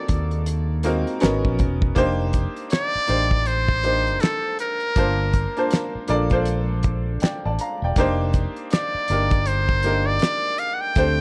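A buzzy, metal-muted trumpet sings a sultry, introspective neo-soul R&B melody with light vibrato and scooped notes over clear, short-sustained vintage grand piano, joined at 0.1 seconds by a round, punchy fretless electric bass with lush chorus and a dry, cloth-damped drum kit of fat snare, tight kick, hi-hat and handclaps, all set in a lightly reverberant studio room with a gently swung feel.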